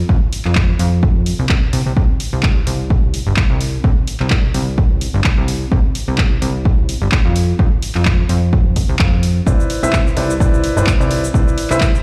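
A clear, boxy grand piano riff with sidechain pumping and dub echo arrives at 9.5 s on a Cmaj9 chord to crown this joyful, uplifting piano house cut at 128 BPM in C major, where a plucky sawtooth-and-pulse analog bass, also pumping, drives from the start beneath a punchy electronic kick and a tape-warm analog drum machine of handclaps, hi-hat and shaker, the groove carrying a 56% swing on the 16ths and sounding as if played through a big sound system in a bare room.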